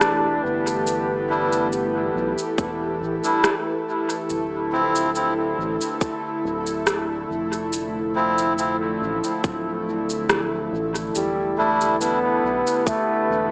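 A light reverb and digital ambience frame this echo-heavy mix, which has a small-speaker sound. It is a meditative, deep piece of ambient dub in D dorian at 70 BPM, with a gentle 16th-note swing, cut from a longer work. An airy, breathy pad holds sustained chords through the whole passage, thickened with chorus, moving from Em7 to Dm9 at 4.3 seconds and back to Em7 at 11.2 seconds. Beneath it, a round, dark analog bass sits low. A bubbling, resonant stepped-filter texture with chorus and its own reverb drifts in the background. A mellow trombone with light vibrato carries the melody at the start and returns at 11.2 seconds, sounding distant and roomy yet up front, with dub echo trailing its phrases. A reedy, nasal melodica adds echoing stabs. An up-front, tape-warm electronic rim click and shaker keep time, and a tight electronic kick joins at 2.6 seconds.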